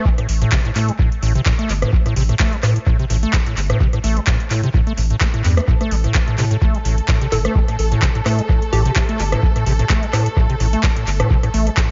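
Trippy and hypnotic, this excerpt from a longer acid house track rides a swung sixteenth-note groove in 4/4. A squelchy, resonant square-wave acid bass riff opens at 0.0 s with a filter sweep, driven through overdrive, analog chorus, cassette tape coloring, dub echo and sidechain pumping. A deep, tape-warm electronic kick sits up front, joined by a booming analog drum machine whose handclaps, metallic hi-hats and rim clicks carry tape echo and the sound of a large room. Beneath them, a thick, triangle-based sub bass, tube-saturated and sustained, breathes with sidechain pumping. At 5.7 s a distant, lush studio string section enters with bowed, sustained chords full of vibrato and portamento, and from 7.3 s to 9.4 s a bouncy, detuned square pluck flickers in the background with ensemble chorus and tape echo. The mix is echo-heavy and dark, with its top end rolled off.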